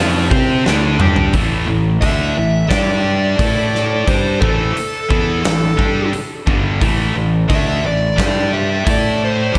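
Heavy and aggressive, this hard rock excerpt at 88 BPM in A minor opens with a bright, double-tracked high-gain guitar riff carrying slapback echo over growly, fuzzed fingered bass, as a huge, punchy arena drum kit enters at 0.3 seconds with a fill at 0.7 seconds, and a dark, smooth overdriven lead guitar with analog delay joins at 2.0 seconds over power chords on D, A and G, all bathed in a lush hall reverb that gives a big arena sound.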